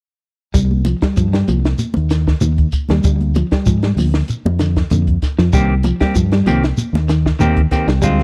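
A dry, close 1970s-style studio sound with small room ambience frames this driving, defiant afrobeat excerpt in C minor at 96 BPM, where a round, punchy fingered electric bass and a compact cocktail drum kit with a high-tuned snare and rolled-off top sit up front, a clean picked electric guitar plays arpeggios through slapback echo, a grainy shekere and soft-handed, thick-skinned congas (from 0.7 s) fill the percussion, and a dark semi-hollow electric guitar adds stabs from 5.5 s over chords moving from Cm to Dm to Cm7.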